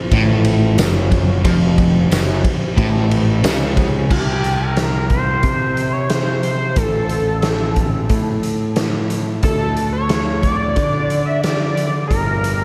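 A dreamy, reverb-soaked mix opens this dark, mysterious psychedelic rock excerpt at 90 BPM, where a mellow tonewheel organ with fast rotary speaker holds sustained chords in the background and a crunchy, double-tracked overdriven guitar plays a riff with harmonic tremolo, both stopping at 4.1 s, while a punchy fuzz bass and an up-front raw garage drum kit with a fat snare drive on, a jingly tambourine sits briefly behind, and a screaming, gritty synth lead takes the melody from 4.1 s through phaser and tape echo.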